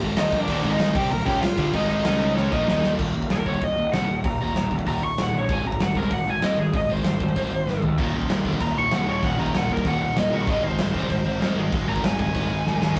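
This rowdy, rebellious punk rock excerpt, cut from a longer piece, opens with a big rock drum kit pounding up front at 192 BPM in a straight 4/4, its punchy kick, medium-tuned snare and dark, rolled-off top driving a crowd of guitar riffs in Eb major from the very first beat. Beneath the drums sit a sludgy, overdriven guitar and a very quiet overdriven electric guitar, both picked and warm in tone. Alongside them, a growly fuzz bass adds a bright, direct-and-amped edge from the background. A lo-fi lead guitar through a small cranked amp comes in at 0.2 s, dark and overdriven, sitting up front and stretching into a solo from 3.0 s to the end. A bright, high-gain, double-tracked distorted guitar thickens the riff in two stretches, entering at 0.5 s and returning at 8.0 s, while drum fills mark the ends of phrases. The whole band sounds caught in a rough rehearsal room, with moderate stone reverb and a warm, saturated grit.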